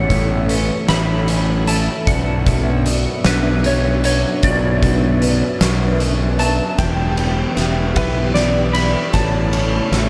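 A dreamy, reverb-soaked post-rock excerpt in B minor at a slow 51 BPM in 6/8, cinematic and cathartic, where a dark, slide-played clean lap steel carries the melody over an airy, breathy pad, twangy picked guitar and ringing vibraphone arpeggios in the background, a round, fuzz-driven fingered bass up front, and an oversized low-tuned drum kit with a fat snare and dark cymbals whose fill builds from 6.8 s as the chords move from A and Bmadd9 to Em.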